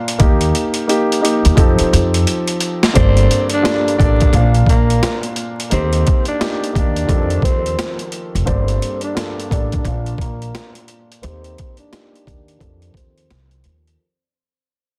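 A swung 16th-note groove at 87 BPM in 4/4 drives this dark, gritty boom-bap hip-hop piece, cut from a longer track. A sampler-style drum kit sits up front, compressed, pitched down and overdriven, with a thumpy kick, a high-tuned snare and hi-hat re-recorded in a large room, and it opens with a drum fill that runs until 3.0 seconds. Alongside it, a woody pizzicato upright bass and a mellow, intimate grand piano, also up front, with audible action noise, long sustain and a cassette-tape colour, move through Eb, F7, Gmadd9 and Bb. At 3.0 seconds a growling tenor saxophone enters with a breathy, raspy subtone solo in a jazz style, its scooped notes, vibrato and smooth top treated with filtering and digital delay. From that point a filter sweep and a fade-out carry the passage to its end at 14.0 seconds. The mix is dense and heavily limited, dry in ambience, and dusted with vinyl crackle.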